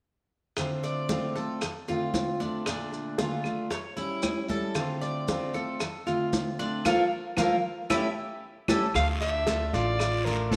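A wet echo-chamber reverb and small-room ambience frame this danceable, nostalgic Cuban son and guajira fragment in D minor, moving at 115 BPM in a straight 4/4. From 0.6 seconds a full-bodied jumbo steel-string guitar, picked up front with audible finger squeak, lays down accompaniment, joined at 0.8 seconds by a bright, metallic tres whose doubled strings ring out in arpeggios. Behind them sits a background bed of tight, vintage bongos, high-tuned congas struck with hard hands, compressed and saturated woody claves, and grainy, mellow maracas. The harmony moves through Dm7, Bbmaj7 and A7 before a band accent and a short drum fill set up the next section. At 8.9 seconds a dark, growly pizzicato upright bass thumps in up front alongside a raspy guiro, and at 9.0 seconds a breathy soprano saxophone takes an intimate, whispered solo melody with soft attacks and scooped notes.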